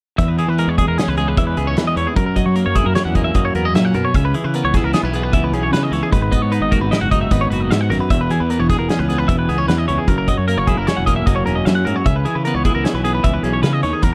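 Math rock and midwest emo in a wistful yet bright mood, this cut from a longer piece moves at 152 BPM in 5/4 in E lydian, with two clean, twangy, compressed twelve-string electric guitars, one picking low accompaniment and the other picking up-front arpeggios above it, over a dark, round, punchy fuzz bass with overdrive and a loose indie drum kit whose roomy, distant sound carries a tight kick and medium-tuned snare under hi-hat, all cycling through E6, F#7, C#m7 and G#m7 with little reverb.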